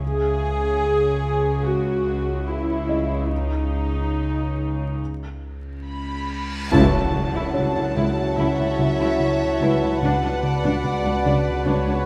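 A rich, up-front viola section bowing softly sul tasto opens this tense, eerie suspense film-score excerpt in C# minor at 73 BPM, over background cello and double bass sections, a chorused, nasal analog drone and a boxy felt-muted upright piano. During a break, an intimate violin melody with light vibrato enters at 5.9 s, and a huge reverse cymbal rises from 6.2 s into an impact at 6.7 s. From 6.7 s, dark, distant French horns hold chords while a round, deep, detuned analog bass plays a riff and floating high violins add texture, joined later by a second violin line, all under vinyl crackle and a wet scoring-stage reverb.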